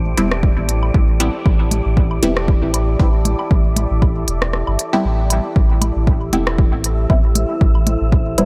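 Dub techno at 117 BPM in A minor with a light 16th-note swing: a hazy, deep excerpt resting on a single Am7 chord, where a punchy, up-front electronic kick drives the groove but drops out between 4.5 and 5.6 seconds. A round, soft sub bass sits forward beneath a dark, chorused ambient pad with a slow attack, long release and built-in reverb, while a breathy, wind-like tuned noise texture floats above, all three pumping with sidechain compression. Filtered, nasal chord stabs with phaser and dub echo join a drum kit of smooth hi-hats and rim clicks, alongside tape-warm woodblock and congas set in the background, the whole mix bathed in digital ambience.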